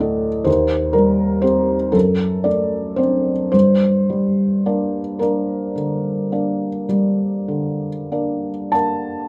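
In a rubato 12/8 lilt at about 31-43 BPM in dotted quarters, this wistful, melancholic romantic nocturne in G minor, cut from a longer piece, features a solo felt-muted upright piano that sounds soft, mellow and intimate, with audible action noise, sitting up front in light reverb and ranging from D2 to A5 as the harmony moves from Cm/Eb at 0.5 seconds through D7/F# to settle on Gm at 3.5 seconds, all tuned to A4 = 441 Hz.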